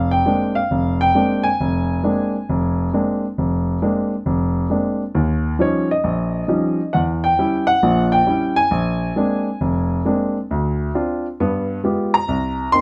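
Solo jazz with a sophisticated, swinging mood, played on a baby grand piano whose natural, up-front tone sits in a dark, warm production with light reverb. The piano alone carries the full 12.8 seconds over a swung 4/4 pulse, spanning deep bass notes to the upper register. The harmony moves from Bb9 to Eb9 and through Edim7 back to Bb9, then turns through Dm7 and G7b9 to Cm7 as this fragment of a longer piece breaks off.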